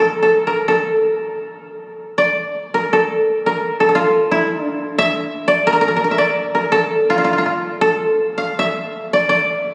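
Austere and calm, this short cut from a longer piece of Japanese traditional chamber music unfolds in a free, rubato 2/4 feel. A solo koto, plucked with fingerpicks, sits up front with a mellow, woody tone in the range from E4 to F5, opening with a brief passage before moving into a new section at 2.1 seconds that carries through to the close at 9.7 seconds. The sound places it in a cavernous cathedral-like reverb with a long 4.9-second tail, captured on a phone in the room and compressed.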